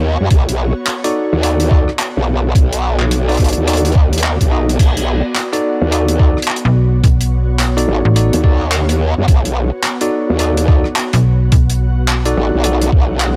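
This playful, swaggering glitch hop passage in B minor opens on a growling, saturated bass that wobbles up front through a formant filter and chorus. Beneath it sits an ethereal, airy pad of detuned unison saw and triangle tones with a noise layer, slow attack and long release, kept in the background with ensemble chorus, built-in reverb and sidechain pumping. At 0.3 seconds a gritty, pitched-down, thumpy electronic kick lands up front alongside a cloth-damped acoustic kit, dry and dark with dark cymbals and a rolled-off top, plus handclaps, hi-hat and rim clicks, riding a 107 BPM groove with a 62% swing on the sixteenths. From 1.0 seconds a bell-like tine electric piano adds clean, bright stabs through a low-pass filter, digital delay and its own sidechain pumping. At 6.7 seconds a snappy FM bass with a metallic, decaying attack joins up front, and the whole cut, which opens on a B7#9 chord, carries a noticeable layer of studio ambience.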